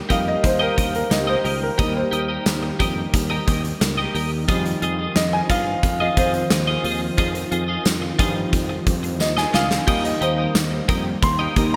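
A bright, polished 1980s-style digital production in a lush hall reverb carries this dramatic, urgent pop excerpt at 89 BPM, where a clear concert grand piano takes the lead over a silky string machine's sustained chords, a warm, clean twelve-string electric guitar riff with chorus and delay, a growly fretless bass, a punchy gated drum kit that plays a fill at 9.2 seconds, and a faint, distant tambourine, all moving from Eb to Fm7 and back.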